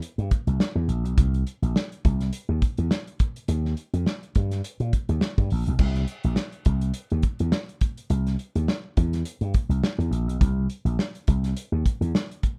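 Energetic and playful, this short funk cut from a longer piece moves at 104 BPM in C mixolydian, with a light 16th-note swing giving it a loose bounce. An acoustic soul drum kit with a small-room sound, dark cymbals, a medium-tuned snare and a tight kick sits up front beside a bright, growly slap bass pushed through an envelope filter, punchy and amped, ranging from Bb1 to Bb2. The rough home demo mix is dry, and the groove shifts into a new section at 5.8 seconds before the drums ring out to 12.6 seconds.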